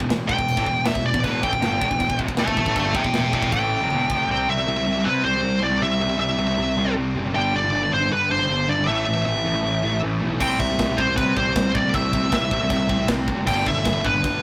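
Relentless, aggressive heavy metal at 157 BPM, in which a dark, up-front high-gain lead guitar opens with a solo over riffs from two overdriven electric guitars (one double-tracked and very quiet) and a scooped guitar, with a growly fuzz bass underneath, while a tight, polished drum kit with bright cymbals plays a fill, drops out at 4.2 s and returns at 10.4 s, as the chords move from Em through C, G5 and A5 in a rough rehearsal-room recording with light reverb.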